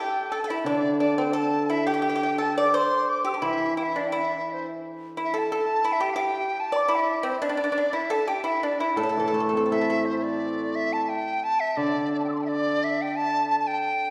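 The large dizi carries the melody throughout this tender, graceful piece of Chinese traditional chamber music, its bamboo tone pure and buzzing from the membrane, with vibrato, tongued notes and rolled-off highs giving it an expressive, up-front voice. Beneath it, the pipa plays a dry, percussive second line with fingerpicks until about 10.0 seconds. The hammered dulcimer adds a shimmering, ringing accompaniment in two passages, dropping out briefly before returning at 9.0 seconds. The music moves freely in rubato around 86 BPM in 2/4, set in the A yu mode with tuning at A4 = 437 Hz, and shifts into a new section at 10.4 seconds. A wet concert hall reverb places the ensemble further back in the room, framing this passage cut from a longer piece.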